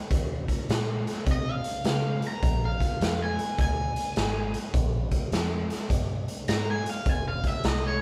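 A gritty, soulful electric blues shuffle opens at 0.1 s with a raw garage drum kit and a vintage muted bass entering together, the hi-hat, punchy kick and medium-tuned snare sitting up front with a saturated, rolled-off top. The fingered bass is dark, round and foam-muted, its amped tone giving the swung groove a thick low end. At 1.3 s a cranked stack guitar comes in with the melody, its picked notes carrying a warm, overdriven edge high above the rhythm section. The chords move from Eb7 to Bb7 and settle on F5, all within a short passage cut from a longer piece. The band sounds as if playing live in one large studio, with a moderate reverb adding a bright stone-room air around the drums.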